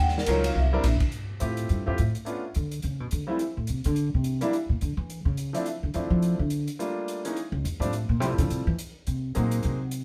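Small-group swing and bop jazz at a brisk 212 BPM in F major, sophisticated and playful, cut from a longer piece and opening with a brief ringing, metallic vibraphone phrase on medium mallets with the motor off that stops at 0.8 seconds. From 1.1 seconds the woody, up-front pizzicato upright bass takes a solo on steel strings, while a bright, brilliant grand piano comps through rich chords like Ebm9, Dbmaj7#11 and Ab7. The airy, polished big-band drum kit swings softly underneath with dark cymbals, a medium-tuned snare and a punchy kick, the whole band heard live in one room with wet studio reverb.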